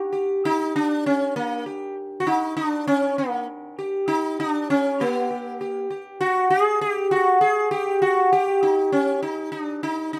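Longing and introspective, this short passage cut from a longer Indian classical piece sits in raga Todi on G at 99 BPM in a straight 4/4. A solo acoustic sitar plays from 0.1 seconds to the end in the range from Bb3 to Ab4, its plectrum-plucked tone bright and buzzing, with the sympathetic strings adding a shimmer. Close, detailed miking with little reverb keeps the instrument up front, and the music moves into a new section at 5.0 seconds.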